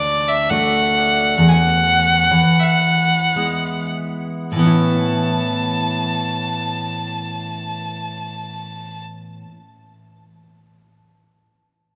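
A rubato 3/4 pulse drifts between 47 and 71 BPM, easing slower through the first 4.5 seconds of this wistful, pastoral Celtic slow air in A major, cut from a longer piece. Up front, a single bowed fiddle sings a clear, boxy melody with light vibrato and an airy bow, intense in tone, while a full-bodied jumbo steel-string acoustic guitar picks an accompaniment through D, a brief chordless stretch, E and a closing Aadd9. The fiddle stops at 9.0 seconds, leaving the guitar to ring on until 9.6 seconds in a moderate cathedral reverb.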